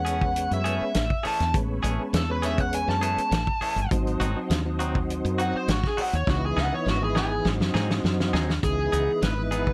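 The smooth, overdriven lead guitar opens this brooding fragment of straight-eighth soul blues, taking a solo through tape echo while a tonewheel organ, a clean electric guitar and a fretless bass sound beneath it, and a soul drum kit enters at 0.1 seconds. The mood is mournful, set in C# minor at 102 BPM in a straight 4/4, with the harmony moving from Amaj7 to G#7 and settling on C#m9. The organ holds down the accompaniment with chorus vibrato, key click and a slow rotary speaker, and the bright, twangy clean guitar, recorded direct and compressed, adds picked stabs. The woody fretless bass is round and hollow-bodied and sits up front, as does the drum kit, whose punchy kick, medium-tuned snare and hi-hat carry a rolled-off top in a tight booth sound. A drum fill runs from 6.3 seconds, and the solo gives way at 8.6 seconds to a brief closing section, all within a light reverb and a warm overall tone.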